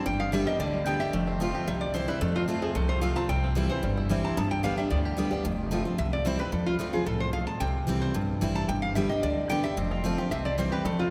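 Drenched in the long, wet reverb of a church or concert hall, this joyful, driving bluegrass excerpt moves at a brisk, straight 4/4 over a repeated run of G, F and C chords. The lap resonator guitar carries the melody up front with a nasal, metallic slide tone played with fingerpicks, while a full-bodied dreadnought steel-string guitar picks the accompaniment, also up front, and a woody, thumpy upright bass on gut strings anchors the low end with pizzicato. A twangy, percussive banjo, fingerpicked and sitting in the background, adds a second melody line until 5.5 seconds, then returns at 9.8 seconds.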